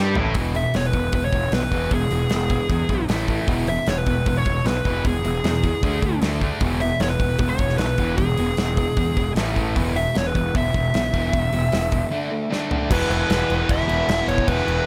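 A dark, smooth lead guitar sits up front from 0.6 seconds, its overdriven, picked melody trailed by tape echo over a swaggering, energetic hard rock groove at 153 BPM in E mixolydian. Beneath it, a punchy, polished rock drum kit with bright cymbals and a fuzzy, overdriven picked bass drive things forward, while a high-gain guitar and a sludgy overdriven guitar grind away in the background, joined briefly at the start and again from 12.9 seconds by a tight, double-tracked distorted guitar. Drum fills open the excerpt and lead into the closing section at 12.9 seconds, all set in a light small-room ambience.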